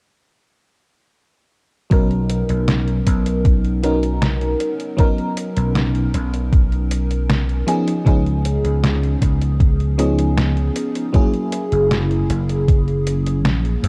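At 1.9 seconds a dreamy, woozy vaporwave groove opens in B major at 78 BPM. An FM electric piano layered with a soft pad carries the chords, Bmaj7 moving to C#9 and then F#9, with a lush, mellow tone washed in chorus, phaser, tremolo, tape echo and a cassette-tape haze. Beneath it, a vintage slap bass sits up front, amped and punchy. An overdriven electronic kick thumps prominently, while a detuned 8-bit drum machine supplies hi-hat and a medium-tuned snare, both overdriven and re-recorded in a large room for a sampler-style texture. The kick drops out at 12.8 seconds, leaving the piano, bass and drum machine to carry this fragment of a longer piece through its dark, dry production to 13.9 seconds.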